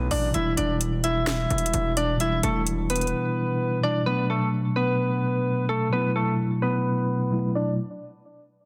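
Trap-flavoured hip hop cut from a longer piece, eerie and melancholic, moving at 129 BPM in 4/4 with a half-time feel in B minor. Soft, round electric-piano-like synth keys carry the melody up front, their gentle tone shaded by chorus and a low-pass filter, while a mellow tine electric piano, clean and heard as if through built-in speakers, supplies accompaniment alongside them. For the opening stretch over an Em7 chord, a heavy, saturated 808-style bass with an aggressive distorted edge and a trap drum kit with a sharp snare and metallic hats drive the groove until both drop out at 3.1 seconds. After a silent gap, the second section arrives at 4.1 seconds on Bm7, where the two keyboard parts continue under a filter sweep through to the end. The sound is dense and heavily limited, set in light digital reverb.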